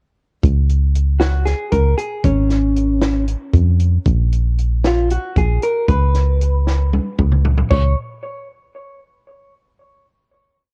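A punchy, round FM bass and a compact cocktail drum kit open this short, driving progressive piece at 0.4 seconds, setting up a 7/8 groove at 231 BPM in Db mixolydian, with the bass tied to the punchy kick and the dry kit offering dark cymbals and a high-tuned snare. At 1.2 seconds a clean, picked hollow-body jazz guitar enters up front with an intricate, motif-based melody in sentence-like phrases, its compressed tone carrying analog delay and a cassette-tape grain shared with the drums. A drum fill starting at 6.7 seconds leads into a held final note, all heard in small-room ambience with a homemade cassette character.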